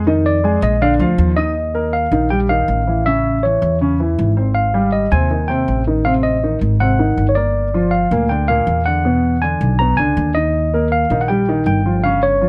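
Close, detailed and nearly dry, this sunny, sophisticated Afro-Cuban jazz excerpt moves at 160 BPM in Eb major. A dark, mellow grand piano with short sustain comps up front while a woody pizzicato upright bass on steel strings holds the low end. From 0.3 seconds a worn, slightly out-of-tune tine electric piano, lightly overdriven through a combo amp, carries the melody, taking a brief solo in the opening 1.6 seconds before the harmony moves through chords such as Ebadd9, Abmaj7 and E9.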